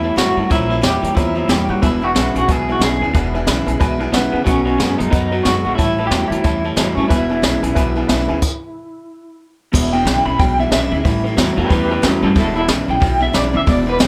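Rockabilly with a rollicking, retro feel, this 14-second cut from a longer piece swings lightly at 182 BPM in 4/4, centred on E mixolydian and moving through A7, A#dim7, E7 and B7. A bright, twangy electric guitar through a small old amp carries the melody up front, slightly broken-up and picked, with tremolo and tape echo. A second small-amp electric guitar plays a low, lo-fi riff beneath it, joined by a thumpy, woody gut-string upright bass played pizzicato and a picked steel-string acoustic guitar sitting back in the mix. A worn, slightly detuned upright piano adds high accompaniment bathed in plate reverb until 8.4 seconds, when a stop hits, and at 9.7 seconds the music moves into a new section featuring a clean electric guitar solo. Brushes on a distant, roomy kit enter at 0.2 seconds, with a boomy kick, a high-tuned snare and dark cymbals, all under a light overall reverb.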